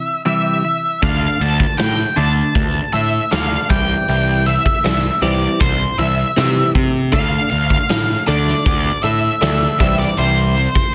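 A dark, distorted octave-fuzz lead guitar carries the melody over compressed, phaser-tinged arpeggios from a clean twelve-string electric guitar at the start of this brooding, cathartic alternative rock cut. At 1.0 seconds a fuzzy, overdriven picked bass and a big-room acoustic drum kit, with a punchy kick and medium-tuned snare, push forward as the chords move from C through D5 and Dm. The mix stays dry and close, with the lead guitar's slapback echo standing out up front.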